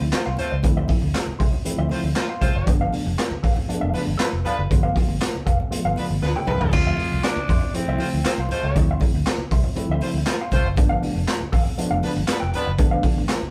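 Cool and sly, this straight 119 BPM funk in D dorian sets a raw garage drum kit up front, saturated and punchy with handclaps and toms, against a round, foam-muted fingered bass, a dark wah guitar with spring reverb, clean tine electric piano stabs, a smooth octave-doubled horn section and very quiet low-tuned congas, all moving between Dm9 and G9 in one live room until a drum fill ushers in a growling, raspy tenor saxophone from 6.7 to 9.0 seconds.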